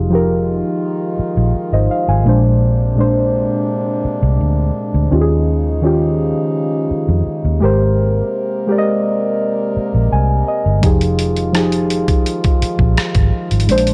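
Over a straight 4/4 at 84 BPM in F minor, a round, punchy muted electric bass sits up front beside muted, felt-like synth keys with a soft chorus sheen, while a mellow French horn section holds sustained chords beneath, moving through Fm9, Bb9, Eb9sus4 and Abmaj9. This sensual, late-night contemporary R&B excerpt has a dark, warm production with light reverb, and the keys play a short fill from 9.8 to 10.8 seconds. At 10.8 seconds a dusty, gritty sampler-style drum kit enters with a thumpy kick, hi-hat and rim click as the chords return to Fm9.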